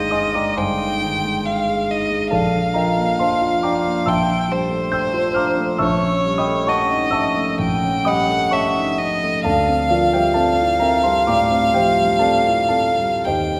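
A lone violin, rich and focused with vibrato, sings a dreamy melody up front over a dark, mellow grand piano whose deep bass and long sustain fill out the harmony from the opening moment. This impressionist classical duo moves in a rubato 4/4 at around 53-70 BPM, drifting through luminous seventh and eleventh chords such as Bbmaj7 and A7#11/Bb before settling on Dm11 at 9.5 seconds. A wet scoring-stage reverb gives the 13.6-second passage, cut from a longer piece, a spacious glow.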